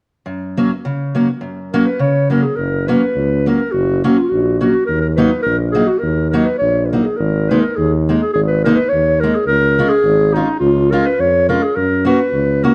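A dark, boxy fingerpicked steel-string acoustic guitar opens this bouncy, jolly alpine folk dance at 104 BPM in a lightly swung 2/4, its parlour tone carrying audible finger squeak, before a soft-attacked clarinet enters at 1.7 seconds with a classical-style melody up front. At 2.6 seconds a mellow tuba joins on the bass line, sounding distant and roomy, as the band moves through F#, D#m, G#sus2 and C# back to F#. The trio plays live together in a stone room with moderate reverb, and the recording is cut from a longer piece.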